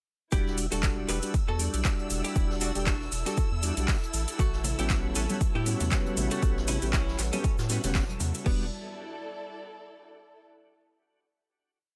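Smooth and warm, this short deep house piece moves at 118 BPM in E dorian with a gentle 16th-note swing, riding a single drop from 0.3 seconds that shifts from Em9 to A13 and settles back on Em9 for a final chord held until 10.5 seconds. An overdriven electronic kick sits up front with a deep four-on-the-floor pulse, joined by a programmed kit of handclaps, metallic hats and a crash, while a brushed jazz kit plays a looped breakbeat with edits in the background and a grainy tube shaker adds distant hand-played sixteenths. A round, dark analog bass carries a dotted-rhythm line, and a tonewheel organ with slow rotary speaker, chorus vibrato and delay punches out syncopated, rootless chord stabs that pump against the kick. A clean, compressed hollow-body archtop guitar repeats a delayed riff melody in thirds and sixths. Behind them, a bowed studio string section drifts through slowly shifting chords with vibrato and portamento, a shimmering string machine holds a high violin note, a moody detuned sawtooth pad enters very quietly at 4.4 seconds, and bright, band-limited congas add syncopated hand drums from 4.6 seconds, all set in a small room ambience.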